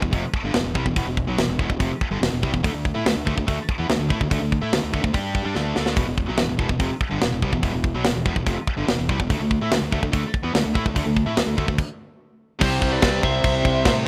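A straight 4/4 pulse at 144 BPM drives this aggressive, heavy metal excerpt in E minor, cut from a longer piece. A tight, up-front acoustic drum kit with a medium-tuned snare, tight kick, hi-hat and crash anchors the groove, breaking into a fill at 5.6 seconds and joining the whole band in a stop before the new section. Two picked rhythm guitars play the riff from the start, one overdriven and warm, the other bright and high-gain, both sitting in the background over a dark, fuzz-laden fingered bass, as the chords move between Em and D5. At 12.6 seconds the harmony shifts to C, where a high-gain lead guitar takes a short melody with a second lead line beneath it, and a very quiet double-tracked fuzz guitar adds a thick riff. Light studio reverb colors a rough home demo mix.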